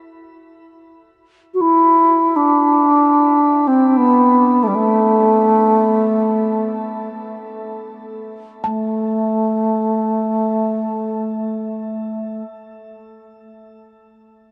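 A reedy, airy bass flute carries the tongued, straight-toned melody up front from 1.5 s in this spacious, meditative world piece in free time and A minor, while a buzzing, woody marimba played with soft mallets adds a mellow, round texture in the background at the start and again from 8.6 s, both parts bathed in shimmer reverb (with delay on the flute) inside a huge ambient space and a dark production, in an excerpt cut from a longer work.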